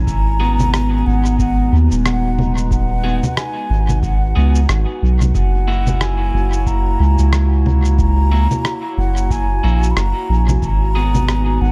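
Spacious and peaceful, this short ambient dub cut moves at 91 BPM in 4/4 with a swung sixteenth-note feel, resting on G#m7 before shifting to F#7 at 5.4 seconds and returning to G#m7 at 10.6 seconds. A deep, round sub bass sits up front from the start, while a dark, warbling pad with a nostalgic lo-fi tape character holds sustained, detuned chords beneath a chorus shimmer and its own reverb. An airy, hollow concert flute carries the melody high in its register with gentle vibrato, trailing dub echoes behind it. An electric guitar on the edge of break-up enters at 0.4 seconds with picked, compressed stabs, bathed in spring reverb and echo. In the drums, an overdriven analog kick sits in the background, joined by a muffled, pitched-down, sampler-style pattern of shaker, congas and rim click; both carry small-room ambience, with echo on the hand percussion. The overall sound is dry in room tone yet heavy with echo.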